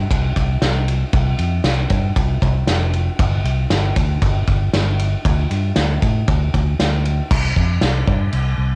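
Dreamy and blissful, this short cut from a longer rock piece leans into shoegaze and dream pop, moving in a straight 4/4 with its tuning sitting a touch below standard pitch. A fingered electric bass carries the low end from the very start, its amped, warm tone ranging from F1 to A2. A loose, acoustic indie drum kit enters at 0.1 s, playing kick, snare, crash and ride. The kit sounds roomy and distant, though it still sits up front, with dark cymbals, a medium-tuned snare, a punchy kick and a rolled-off top dulled further by cassette tape. The whole thing is a home recording on cassette with little reverb, and the music shifts into a new section at 7.3 s before the drums stop at 8.4 s and the bass rings on alone to the end.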